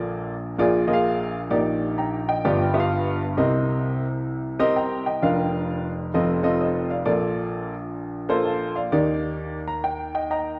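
A solo upright piano opens this short gospel excerpt, its woody, slightly detuned tone sitting up front with long sustain and a vintage character. The mood is jubilant yet reverent, carried by a swinging 4/4 feel that gives the eighth notes a relaxed lilt. The piano spans from deep bass notes up into its upper register, moving through rich seventh chords that lend the harmony a churchy, hymn-like glow. A generous hall reverb surrounds the instrument, placing it in a resonant church or concert space that lets each chord bloom and linger. Near the close, at 9.4 seconds, the piano slips into a brief fill before the passage breaks off, clearly cut from a longer performance.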